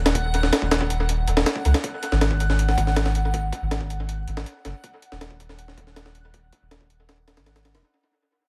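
Raw and nostalgic, this drum and bass and jungle excerpt at 160 BPM fades out across its 7.8 seconds, pairing a gritty, pitched-up breakbeat sampler kit with a thumpy kick and dub echo, entering at 0.1 seconds, with a deep, round sub bass carrying tube saturation and a reversed, dreamy granular texture on F#5, over chords of D#m and F#sus2 beneath vinyl crackle in an echo-heavy, fairly dry mix.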